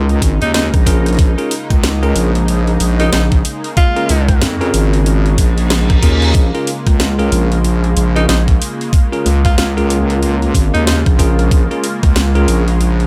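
Gritty and funky, this glitch hop excerpt rides a swung 93 BPM groove in Bb minor, sitting on a single Bbm7 chord with a knocking, up-front electronic kick and a drum kit of hi-hat, rim click and cracking snare. A heavy, saturated wobble bass with chorus and overdrive anchors the low end beneath a smooth, detuned sawtooth pad with chorus and sidechain pumping, while bell-like electric piano stabs add a clean, direct sparkle through digital delay. A clear tenor saxophone carries the melody with light vibrato and vintage sampler grit from 0.4 to 11.0 seconds, and a reverse cymbal sweeps in at 5.4 seconds, all in a dry, close sound.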